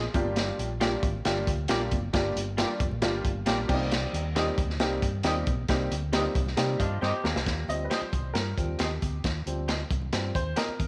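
Uptempo 1960s-style soul in Eb major at 135 BPM, this danceable, warm excerpt is driven by a crunchy, gritty breakbeat kit with dark cymbals and a tight kick up front, a round, punchy fingered bass, and a clear, woody, slightly detuned upright piano carrying the accompaniment over Gm7 and Cm7 chords. A slightly broken-up guitar through a small old amp adds tremolo stabs in the background, very quiet high-tuned congas tick along, and a second, twangy guitar plays a brief riff from 6.8 seconds. A drum fill leads into an upright piano solo over Eb6 at 7.5 seconds, all in a small room with light reverb.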